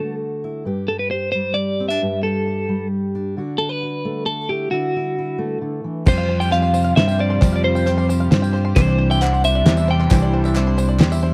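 A twangy, slightly broken-up electric guitar carries the melody with tremolo over a fingerpicked steel-string acoustic guitar, whose fresh strings and finger squeak sit up front in this hopeful indie folk excerpt at 133 BPM in 3/4. At 6.1 seconds the arrangement builds: a shimmering twelve-string acoustic, a reedy bowed string section in the background, mellow banjo arpeggios, an up-front fingered bass, a muffled, cloth-damped drum kit with a fat snare, and a jingly tambourine all enter. At 8.8 seconds a woody, boxy upright piano and crisp group handclaps join, all within a dry, close 1970s-style small-room sound.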